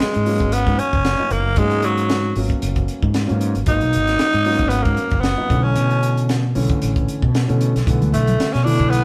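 A vinyl crackle and a moderate stone-room reverb frame this short cut from a longer electric jazz fusion piece, played live by a band in one room. The mood is driving and funky, at 114 BPM in 4/4 with a light sixteenth-note swing. Up front, a growling tenor saxophone carries the solo melody with a raspy, gritty jazz tone, scooped notes and a light vibrato. Beneath it, a fretless electric bass sits round and punchy, while a dark concert grand piano supplies mellow accompaniment with a deep low end. A crisp fusion drum kit keeps time on hi-hat, a tight kick and a high-tuned snare, its small room audibly pumping, and bright, damped congas slip in very quietly from 8.0 to 8.8 seconds. The harmony sits on G#m11 before moving to Bm11 at 5.5 seconds.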